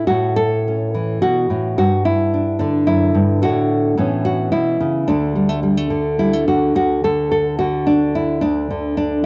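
A solo nylon-string guitar, fingerpicked and up front, opens this hopeful, gentle folk passage cut from a longer piece. Its full-bodied, deep classical tone spans from D2 to A4 and carries a cassette-tape character. The playing moves in a rubato 3/4 around 108 BPM in D major, tuned slightly high to A4 = 441 Hz, with harmonies passing through Aadd9, G5, D/A and D5. Finger squeaks surface on the strings, and a moderate spring reverb with a 2.2-second tail gives the home cassette recording a soft halo. At 6.8 seconds the chords fall away into a new section, which runs until the fragment ends at 9.3 seconds.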